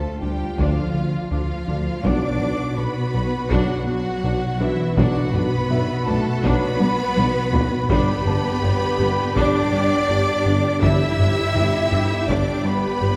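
Heard from further back in a wet concert hall, this vast, brooding stretch of hybrid orchestral and electronic film score sets a smooth symphonic violin section on the melody above a close, expressive studio violin section, a lush viola section in the background, and cellos, double basses and a distant tuba holding the low end. A rubbery, hollow square-wave bass riff sits prominently beneath tight, detuned synth arpeggios and a soft felt-muted upright piano, while very quiet dark French horns and roomy trombones sustain chords from 0.6 seconds. Band-limited taiko drums struck with hard sticks rumble underneath, with a drum fill between 6.8 and 7.9 seconds as the harmony moves from D minor through B minor to G.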